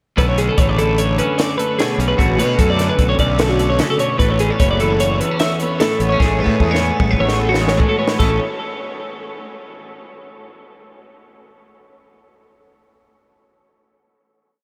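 Intricate and playful, this short, complete piece of math rock and midwest emo moves at 150 BPM in a straight 5/4 in A major. One twelve-string electric guitar sits up front with a bright, twangy, clean ostinato, touched by subtle chorus. A second twelve-string guitar plays syncopated fingerstyle arpeggios high in its range, with a mellower tone and delay. Underneath, a fingered electric bass with overdrive and fuzz gives a round, gritty low end. A compact cocktail drum kit plays a dry, acoustic 5/4 groove with a punchy kick, high-tuned snare, dark cymbals, hi-hat and toms, rolling into a drum fill from 6.2 seconds. The harmony moves from Bm11 through A69 to Amaj9 before settling on a final A chord at 8.2 seconds, all held in a dreamy mix drenched in a huge ambient reverb.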